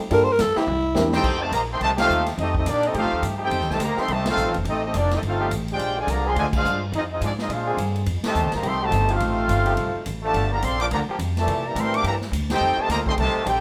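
Big band swing, brassy and energetic, cut from a longer piece: a gritty, growling tenor saxophone opens with a brief raspy solo over a dark, mellow baby grand piano and a drum fill, with the piano gone by 1.1 seconds and the saxophone by 1.2 seconds. From 1.1 seconds a present trumpet section carries the melody with light vibrato while a brilliant trombone section plays a second line, punctuated by band accents. Throughout, a clear trombone section, present from the very start, holds tight sustained chords in the background. Woody pizzicato upright bass sits up front beside a natural-sounding swinging drum kit with a punchy kick, set in a moderately reverberant large studio.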